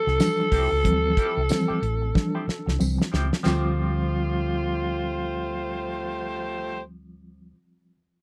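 A growling alto saxophone carries the melody over this driving, funky 92 BPM excerpt in D minor, cut from a longer piece, as a thuddy cloth-damped drum kit with a fat snare and china cymbal, a round hollow-body fingered bass, twangy clean guitar with wah and tremolo, reedy electric piano stabs with fast tremolo and tape echo, and jingly tambourine settle into a swung sixteenth-note groove on Dm11, with a drum fill from 2.1 seconds before a punchy horn section joins at 3.4 seconds as the harmony moves to Dm7, all in a dry, close 1970s-style studio sound.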